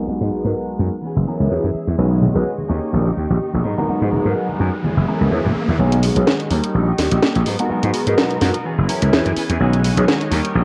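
Filtered disco house with a joyful, feel-good swing, this short cut opens on a phaser-tinged, gritty piano, a lush chorused string machine and a dark, clean picked guitar riff in the background over a growly overdriven slap bass up front, with an electronic impact and riser, distant ringing shaker and congas joining at 2.0 seconds, and a cracking, overdriven house kit of hi-hat and snare arriving at 5.9 seconds for a filter-swept build-up, all through a light digital ambience with cassette-tape character.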